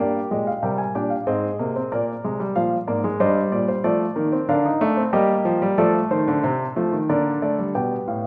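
A warm grand piano, up front with short sustain, opens alone on a contemplative yet driving baroque-style four-part fugue in three, its lines spanning G2 to Ab5 and set in a wet recital-hall reverb, moving through Eb/G, Ab and Bb before reaching a G7 at 7.7 seconds in this brief cut from a longer piece.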